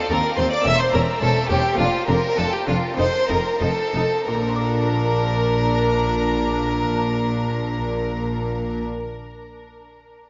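A drenched, cavernous reverb places this brief baroque-style concerto passage in a vast, echoing hall, its sound dulled at the top and lingering long after each note. The mood is brilliant and festive, and the pace slows over the first 4.3 seconds before the harmony settles on a home chord and a new section opens. Up front, a close solo violin carries the melody with a clear, focused tone and vibrato, doubled an octave higher by a bowed violin section in the background, while a second violin section supplies a focused supporting line. A distant viola section and a symphonic cello section fill the middle and low registers with even, rich vibrato, and a close, expressive double bass section grounds the bass. Beneath them, a very quiet buff-stop harpsichord plucks a muted, lute-like, dry accompaniment that rings on briefly to 9.1 seconds after the strings stop.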